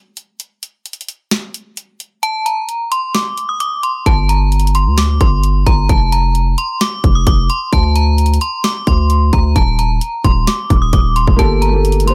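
A half-time trap groove at 131 BPM in G minor sets a melancholic, brooding tone in this short hip hop fragment, with a hard-clipped kick, sharp snare and bright hi-hats starting at 0.2 seconds and sounding re-recorded in a small room. At 2.2 seconds a metallic FM bell enters high in its register, its inharmonic, ringing tone shaped by chorus, phaser and a low-pass filter, with a long release trailing each note. The distorted 808-style bass arrives at 4.1 seconds as the chords begin, an aggressive, heavy sine with a noise layer and fast attack that sits loudest in the mix. The harmony moves from Gm through Fsus4, Bbadd9/D and Eb5 before settling on Gmadd9, where a felt-muted upright piano slips in at 11.4 seconds, soft and intimate with audible action noise. The sound is dry and close, every part placed up front.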